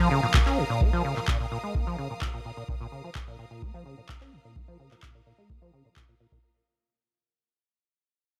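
Trippy and driving, this short acid house excerpt in Bb minor runs at 128 BPM, with a squelchy, resonant sawtooth acid bass riff up front, colored by tube saturation, analog chorus, sidechain pumping and digital delay under a filter sweep, while a lush, bowed studio string section with vibrato holds a pumping texture above, and a deep, overdriven analog kick and overdriven electronic handclaps enter at 0.3 seconds, all set in light small-room reverb as the whole passage fades out.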